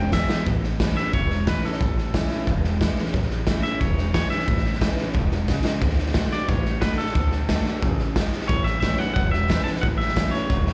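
A straight 4/4 at 180 BPM powers this rollicking, retro rockabilly clip in A major, led by a raw garage drum kit up front, with a punchy kick, a medium-tuned snare and a gritty, saturated sound that opens with a fill and adds another at 5.5 seconds, over a thumpy, woody pizzicato upright bass on gut strings. A clean, twangy electric guitar carries the melody through plate reverb, slapback and tape echo, while a full-bodied, freshly strung steel-string acoustic sits in the background with picked accompaniment, and a very quiet, slightly broken-up electric guitar through a small old amp plays a riff at the start and returns at 8.5 seconds as the harmony moves from A to D and back to A. The whole performance comes across as a live gig heard through the venue's PA, wrapped in club reverb with a dull, rolled-off top.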